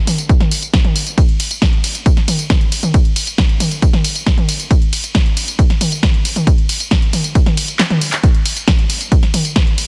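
A straight 4/4 pulse at 136 BPM drives this short trance cut from a longer track, carrying a euphoric, uplifting mood. An electronic kick sits dry and up front, entering at 0.3 seconds and anchoring the groove. Around it, an analog drum machine supplies a punchy snare along with handclaps, hi-hat, ride cymbal, tambourine and toms, with sidechain pumping on the hats, percussion, toms and cymbals. The kick drops out briefly from 7.8 to 8.2 seconds while a drum fill takes its place before the beat returns. A digital ambience surrounds the whole mix, and the dense, heavily limited modern master keeps the whole thing loud and forceful.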